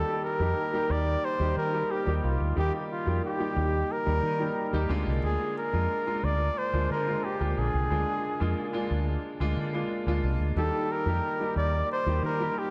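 1980s-style pop at 90 BPM in 4/4, this nostalgic, moody fragment of a longer piece moves from Eb to Bb7 at 4.9 seconds and back to Eb at 10.6 seconds. A close-miked solo flugelhorn carries the melody with light vibrato and scooped notes, its warm tone trailed by delay, over a polished, present baby grand piano and an amped fretless electric bass, both touched with subtle chorus. All three sit up front in a dreamy mix soaked in lush hall reverb.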